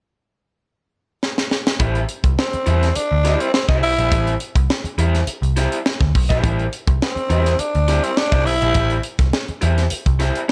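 Driving and sly, this funk fragment cut from a longer piece moves at 104 BPM in A minor, opening with a drum fill at 1.2 s on an up-front kit with a high-tuned snare and tight kick. At 1.8 s a dark, round, foam-muted picked electric bass and a raw, overdriven, lo-fi garage guitar settle onto a rootless Am7. At 2.4 s a raspy, growling tenor saxophone takes the solo melody up front with light vibrato, all in a dry mix with little reverb.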